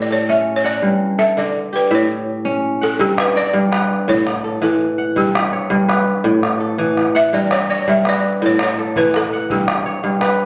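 Up front, a ringing, crisp fingerpicked kora spins arpeggios while a woody, buzzing balafon played with rubber mallets carries the melody in this hypnotic, flowing piece of West African string and xylophone music in G lydian, moving in 12/8 at 111 BPM over chords alternating between A and G; a deep, distant calabash joins at 3.0 s, and the whole passage, cut from a longer piece, sits in moderate recital-hall reverb with the compressed, roomy character of a phone recording.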